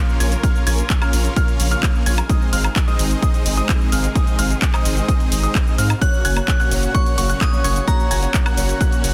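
A straight 4/4 pulse at 129 BPM drives this short, euphoric and emotional slice of festival progressive house, with a punchy, up-front electronic kick entering at 0.4 seconds over a house kit of handclaps, warm hats, shaker and woodblock. Beneath it sits a deep, saturated sine sub bass, pumping with the sidechain, while a huge, thick, detuned supersaw riff carries the energy with vibrato and tape echo. Tucked further back, a brilliant yet worn concert grand plays high arpeggios through tape echo, and an intense, bowed string section holds sustained chords, both breathing with the same sidechain pump. At 6.0 seconds a crystalline FM bell melody arrives with chorus and echo, alongside a dark, clean, fingered electric guitar in the background. The harmony moves from Bbm to Ab and then to Gb, all in a dense, heavily limited, dry modern mix.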